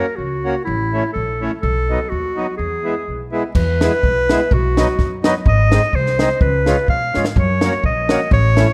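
Jolly and bouncy, this short cut from a longer alpine folk piece has the feel of an alpine dance band, moving at 126 BPM in a lightly swung 2/4 with a touch of rubato, in E major. A bright, closely miked clarinet carries the melody up front in a classical style, playing solo over a full, reedy accordion with a dry tuning that fills in the accompaniment. The pizzicato upright bass sits forward in the mix, woody and growly with steel strings. A compact cocktail drum kit joins at 3.5 seconds, its punchy kick, high-tuned snare and dark crash cymbal sounding dry and acoustic, and it plays a drum fill at 7.1 seconds. The harmony travels from F# through A and B7 to E, then through B, G#, C#7 and back to F#, across two passes of the same section. Light reverb and a dark, warm production round off the sound.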